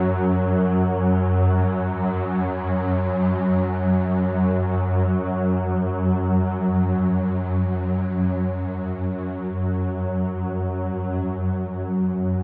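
Bathed in a huge, wet ambient reverb with a dark production, this desolate ambient fragment from a longer piece is carried entirely by a solo swarming drone up front, its detuned unison sine and triangle tones wave-folded and granular, tense and evolving through slow attacks, sustained holds and long releases, soaked in its own built-in reverb and delay before the music shifts to a new section at 11.3 seconds.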